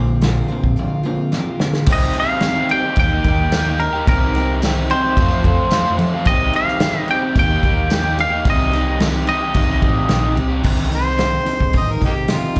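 A straight 4/4 pulse at 109 BPM from an unplugged drum kit played with bundle sticks, together with a round, dark hollow-body bass, drives this wistful, reflective folk rock and heartland rock piece in C dorian: a shimmering, octave-doubled twelve-string acoustic and a double-tracked, overdriven garage guitar riff both carry slapback echo, a twangy, compressed lead guitar with slapback echo takes the melody from 1.9 s over a jingly tambourine in the background, and a gritty, amplified harmonica with slapback echo, scooped notes and tongue slaps steps up front for a solo at 10.9 s, the set captured live through a club PA.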